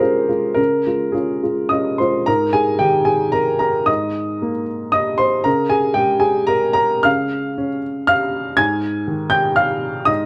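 In a rubato 3/4 that drifts between 105-122 BPM, this intimate, hopeful neoclassical minimalist excerpt in Ab major features a solo upright piano, woody and natural with audible action noise, heard up front in light reverb and spanning Ab2 to Ab6 as it moves through Db, Abadd9, Db and Ab5 over 10.3 seconds.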